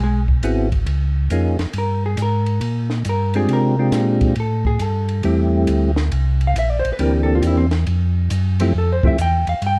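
A swinging 4/4 groove with lilting eighth notes drives this greasy soul jazz organ trio, with a compact cocktail drum kit entering at 0.3 seconds on hi-hat, ride cymbal, punchy kick and a high-tuned snare in a smooth small-room sound. A round, clean tonewheel organ carries the bass through a slow rotary speaker, while a second tonewheel organ, lightly overdriven with percussive third-harmonic attack, chorus vibrato and audible key click, plays the melody from 0.4 to 9.2 seconds. A dark, picked hollow-body electric guitar solos throughout over altered and extended jazz chords, all set in light reverb within a dark, warm production.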